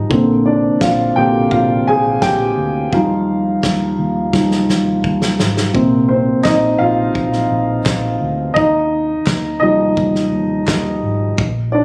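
Recorded on a phone in a small room with light reverb and compression, this uplifting, warm piano-driven pop excerpt in straight 4/4 centres on a dark, woody, long-sustaining upright piano played up front, supported by a round, foam-muted vintage electric bass and a natural country drum kit with a punchy kick that plays a fill at 4.3 seconds, while crisp, band-limited group handclaps sit in the background from 6.4 seconds over chords moving between Bbadd9, Ebadd9 and Bbsus2.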